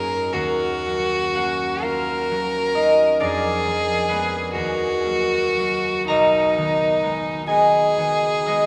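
In a rubato 6/8 lilt at roughly 37-45 dotted-quarter beats per minute, this lyrical, warm romantic classical excerpt sets a rich, focused solo violin melody, bowed with vibrato and a smooth top end, over a ringing, fingerpicked concert harp accompaniment, both up front in a vast, echoing cathedral reverb, as the harmony moves through D#m7, A#7/E#, D#m and G#m/B across its 8.7 seconds.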